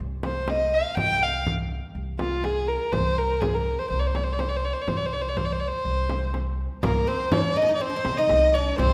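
Melancholic and full of longing, this Arabic maqam ensemble piece is led by a single dark, close violin, bowed with vibrato and placed up front, over a thumpy pizzicato upright bass with gut strings and a small, bright frame drum played dry with soft hands. At 6.8 seconds a bright, plectrum-plucked fretless oud with double strings joins as a second line, alongside a very quiet, lush symphonic violin section with a soft attack and smooth top. The whole ensemble sits in a wet recital hall reverb, and the piece is cut from a longer performance, ending at 8.9 seconds.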